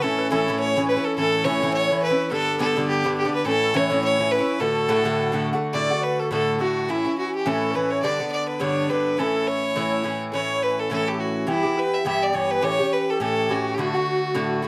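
A clear, earthy fiddle with light vibrato and a touch of plate reverb carries the melody up front in this lively, rollicking Celtic folk fragment at 209 BPM with a swung lilt, while the metallic, double-strung picking of an acoustic Irish bouzouki drives the chords and a pure, wooden baroque flute adds a soft, unsteady second line from the background.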